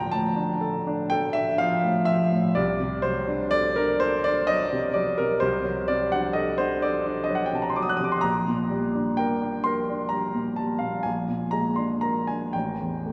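This is a romantic classical nocturne for solo piano, yearning and melancholic in mood, heard as a 13-second fragment cut from a longer piece. It moves at a slow 42 BPM in 12/8, counted in dotted quarters, with a freely breathing rubato feel. A warm, polished baby grand carries everything alone from start to finish, sitting present and up front while ranging from A1 in the bass to F#6 at the top. The harmony opens on D minor and drifts through D7 over C, G minor over B-flat and B-flat 7 before landing on an A7 chord at 12.5 seconds. A generous church reverb with a 3.1-second decay wraps the instrument in a wet, spacious halo.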